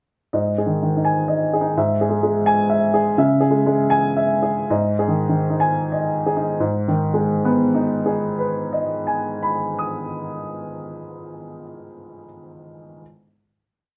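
A woody, natural, up-front upright piano opens this short, intimate and melancholic neoclassical minimalist piece in G# minor, rocking through broken chords in a rubato 3/4 at 85-128 BPM with a second figure above, moving from G#5 through E/G# and C#m, slowing from 2.5 to 6.6 seconds and settling on a held G# minor chord until 10.8 seconds, all set in a moderate studio reverb.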